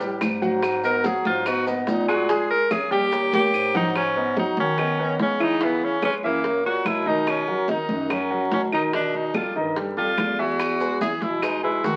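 A driving, fiery Afro-Cuban jazz excerpt in G# minor at 145 BPM opens with a warm grand piano up front, comping through rich, altered harmony. Beneath it, a mellow, roomy bass clarinet carries the low line with vibrato and scooped notes. Tight, high-tuned bongos, bright congas and grainy maracas sit in the background alongside distant, woody claves. At 0.8 s a clear, forceful tenor saxophone takes the lead, punchy yet smooth on top, with jazz vibrato and scooped notes, soloing through a short percussion fill. At 4.0 s the maracas drop out as the music moves into a new section, and they return at 10.6 s. The sound has the crackle of a very old 78 rpm record, with the whole mix sitting in a wet studio reverb.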